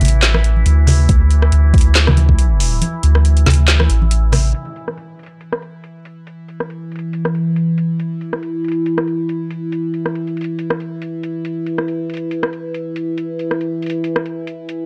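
Meditative and heavy, this deep dubstep excerpt moves at 139 BPM in a swung half-time feel, opening on a drop over a D5 chord where a round, up-front triangle-and-square sub bass and ringing, close congas in the background play until about 4.5 seconds, joined briefly by a knocking, overdriven electronic kick. A resonant sawtooth-and-sine drone with slow attack, chorus and reverb sustains throughout, its moving overtones carried by a filter sweep from 4.5 seconds onward. An overdriven garage kit of woody snare, filtered metallic hats, rim clicks and handclaps runs the whole way, all framed by a dry, gritty cassette character.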